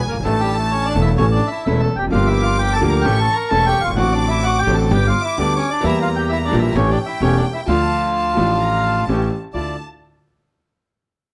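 Tango at 129 BPM in 4/4 with a rubato feel, this passionate, sultry excerpt in D harmonic minor is led by an up-front, reedy bandoneon melody bathed in plate reverb, while a warm chamber violin section plays a soft-attack, sul tasto second line with light vibrato high above. A concert grand piano with audible action noise and deep, short-sustained bass supplies the accompaniment, and a growly, woody pizzicato upright bass anchors the low end, all set in a moderate club reverb. From 2.1 seconds a second, very quiet band-limited bandoneon adds stabs as the harmony moves from Asus4 through Gm7, D7/A, Edim and A7 to Dm, closing on a Dmadd9 at 9.6 seconds.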